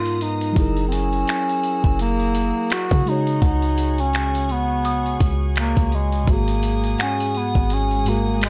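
Late-night and moody, this contemporary R&B excerpt in G# minor moves at 84 BPM with a swung sixteenth-note feel. An up-front, vintage bass clarinet carries the melody with tape echo over muted, felt-like synth keys with chorus and a distant, floating string section holding soft sustained chords, while a gritty, compressed sampler-style kit of finger snaps, hi-hat and thumpy kick sits close. A deep, boomy 808-style bass arrives at 0.6 seconds, a delicate, bell-like celesta with tape echo glints in the background from 0.9 seconds, and a faint electronic swell rises at 7.5 seconds, all in a dry mix with nothing above 11 kHz.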